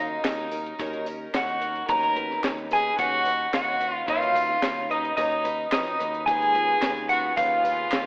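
A slightly broken-up, lo-fi electric guitar carries the tremolo-touched melody up front in this bittersweet, yearning indie folk passage, with a nasal, reedy fiddle tracing a second line beneath it while a woody upright piano, a shimmering octave-doubled twelve-string and a round picked electric bass fill out the accompaniment. From 0.2 s a compact cocktail drum kit with a high-tuned snare and punchy kick joins crisp group handclaps and a jingly background tambourine, and at 6.3 s a veiled, con sordino chamber string section adds soft sustained chords as the arrangement builds. The whole mix sits in a wet scoring-stage reverb and is filtered to a thin telephone sound.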